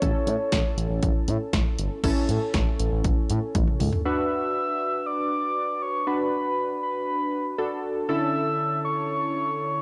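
A soft, round synth lead layered with a dark sub octave carries the wistful yet upbeat synth-pop melody with vibrato, chorus and analog delay, over detuned analog keys whose pulse and sawtooth tones evolve through filter sweeps, while a smooth, nasal gliding bass with portamento and a punchy, tape-warm drum machine of kick, snare, hi-hat, toms and crash drive the opening up to a drum fill at 3.5 s, after which both stop by 4.0 s and the lead and keys carry on in a dry, gritty hardware sound touched with light reverb.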